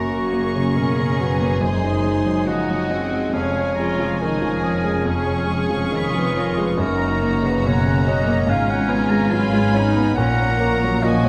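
A present, polished grand piano leads this lyrical, lush romantic movement for piano and orchestra in F# major at a rubato 70 BPM, sharing the melody with a smooth chamber violin section, while a bright solo oboe, a roomy clarinet, a pure, mellow flute ensemble and a focused studio violin section carry second lines over a close chamber viola section, sustained chords from a classical-style French horn section, and a bass of cello and double bass sections, set in a moderate concert hall reverb and cut from a longer piece.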